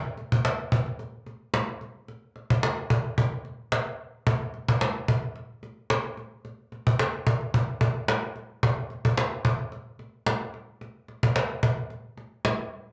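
Bittersweet and driving, this pop fragment features a lone cajon carrying the groove in a straight 4/4 feel, from 0.2 to 12.6 seconds. The cajon sits up front, woody and band-limited with faint snares, struck with hard hands and given a vintage acoustic character plus a slapback echo. It is heard through a live venue's sound system with a wet club reverb, and a brief break arrives at 11.9 seconds before the cut.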